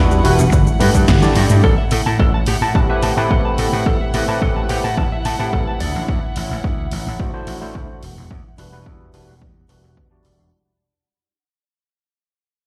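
A straight 4/4 nu-disco groove at 108 BPM rides a punchy electronic kick and a tape-warm house kit of snare, toms, shaker and hats in small room ambience, setting a groovy, cosmic mood in A dorian. A vintage slap bass pumps beneath an overdriven, barky tine electric piano played through a combo amp with analog chorus and tape echo. A dark bowed violin section holds soft, intimate chords under a filter sweep, and a very quiet detuned sawtooth pluck arpeggiates until a drum fill and band accent lead into the next section at 1.6 seconds, where a clean, direct-recorded electric guitar plays a lush, chorused riff until 6.0 seconds as the piece fades out in a reverberant stone room.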